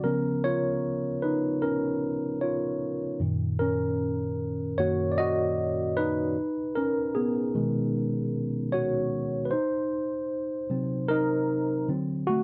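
Smooth and warm, this short R&B excerpt, cut from a longer piece, moves at an unhurried 76 BPM in 4/4 with a swung sixteenth-note feel in F# major. A lone tine electric piano carries the whole passage from 0.0 to 12.4 seconds, ranging from F#2 up to D#5. Its tone is worn and slightly out of tune, yet clean and direct, sitting up front in a moderate studio ambience. The harmony opens on C#13, settles onto F#6 and B6, then darkens through Cm7b5 before reaching D7 at 11.9 seconds. The result feels intimate and lived-in, like a late-night solo moment captured mid-phrase.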